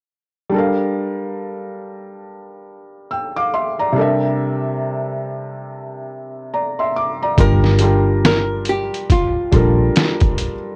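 Lo-fi hip hop with a melancholic, hazy mood and a lazy swing, cut from a longer piece. A soft, felt-muted upright piano opens alone at 0.5 seconds, sitting intimate and up front in a plate reverb as it moves from Gm9 to C13. At 7.4 seconds the harmony returns to Gm9 and the band arrives: a gritty, pitched-down sampler-style drum kit with a thumpy kick, medium-tuned snare and hi-hat, plus a dark, round, foam-muted electric bass that hits with punch. Over this, a clean, picked archtop guitar with a hollow-body tone carries a short melody in its own plate reverb. The whole recording wears a layer of worn, warbling cassette tape with drifting pitch and a light reverb, and the piano rings on until 10.8 seconds.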